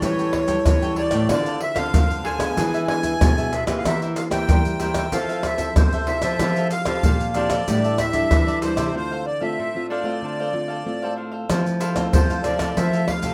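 A straight 4/4 samba-choro groove at 94 BPM comes from up-front maracas, a tight surdo, pandeiro and tamborim played with soft hands in a live room. Above it sits a sweet, reedy accordion melody in D minor with light tremolo tuning, close-miked and dry. Crisp picked cavaquinho and two fingerpicked nylon-string guitars, one a small-sounding accompaniment and the other a classical-toned bass line, fill out the bittersweet, lively harmony over moderate studio reverb, with a break at 8.9 s and a new section opening on Fmaj7 at 11.5 s.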